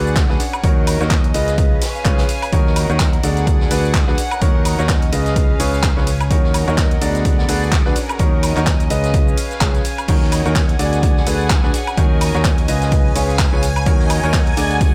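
Piano house at 127 BPM in Eb minor, energetic and soulful, with a swung 16th-note feel and a chord cycle that keeps circling Ebm7, Db7 and Bb7b9b13/D. A warm grand piano carries the riff from the first moment, colored by subtle chorus, a diffuse ambient delay and sidechain pumping, while a fingered electric bass with tube saturation sits low underneath, pumping along with it. A dark studio string section floats behind them with a soft, bowed sul tasto tone and a smooth top. A layered, tape-warm house kit of handclaps, hi-hat, ride, shaker, woodblock and crash opens the rhythm, quickly joined by the punchy electronic kick drum and a very quiet acoustic street-band kit adding snare and hi-hat with a rolled-off top. At 10.1 seconds a shimmering vintage string machine enters with sustained violin chords, its slow attack and ensemble chorus lifting the final seconds of this section cut from a longer piece, all set in light reverb.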